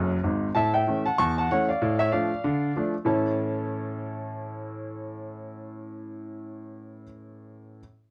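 A home cassette recording with a moderate small-room reverb frames this playful, exuberant stride piano excerpt in A major at 191 BPM with a 60% eighth-note swing, where a bright, brilliant baby grand plays solo from 0.0 to 7.8 seconds across a range from F#1 to C#6, up front and intimate with audible action noise and a touch of cassette tape colour, opening with a quick fill before moving through A7 and Dm/A and settling on A at 3.1 seconds.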